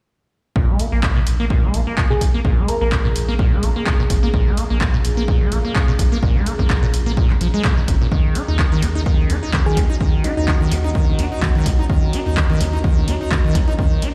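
Acid house at 127 BPM in Bb minor, trippy and driving, cut from a longer piece. A squelchy, resonant sawtooth acid riff with tube saturation, lush chorus and tape echo rides over a thick, saturated sine sub bass that pumps in the background, while an up-front, tape-warm electronic kick and a punchy analog drum machine of handclaps and hi-hat carry a lightly swung 16th groove. A moody, warbling vintage pad fades in from 1.8 seconds, and a round, keys-like FM lead with chorus and tape echo surfaces briefly around 2.1 and 9.7 seconds, all moving from Bbm7 to Ebm7 in a large, reverberant room.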